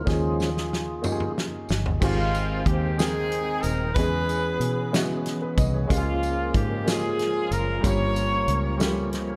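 A tonewheel organ solo, lightly overdriven with key click and slow rotary speaker, opens this hopeful, jubilant slow gospel cut in 6/8 at 62 BPM in Ab major over a drum fill from a punchy, up-front country kit, with a woody upright piano, round foam-muted fingered bass and a jingly background tambourine filling out the dark production before a tight, punchy horn section with vibrato and tape echo takes the melody at 2.0 seconds over chords moving from Abmaj7 to Gm7b5.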